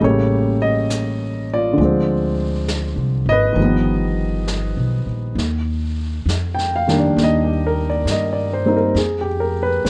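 Dark, lightly reverberant production frames this smoky, intimate jazz ballad in C minor at 67 BPM with a swung 4/4 feel, where an up-front baby grand piano with audible action noise accompanies over chords such as A7b9, G7alt and Cm9, a woody pizzicato upright bass sits close, and a vintage brush kit with a medium-tuned snare and hi-hat stays low in the mix with a rolled-off top.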